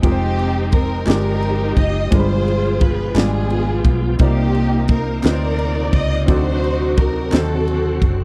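A close, expressive string section carries the melody of this slow, soulful gospel passage in C minor, its bowed ensemble tone marked by vibrato and portamento. Beneath it, a punchy, up-front fusion drum kit with a high-tuned snare, kick and ride cymbal sets a 6/8 pulse at 58 BPM counted in dotted quarters. A dark, round, foam-muted electric bass sits equally forward in the low register, while a clear concert grand piano with deep bass and short sustain supplies accompaniment. Further back, a bright, shouting tonewheel organ holds sustained chords with key click, chorus vibrato and a slow rotary speaker, and a very quiet, distant group handclap joins from 1.1 s to 7.6 s. The solemn harmony moves through Fm9, G7b9, Cm11 and D7b9 in a dry, close 1970s-style studio sound with small room ambience, cut from a longer piece.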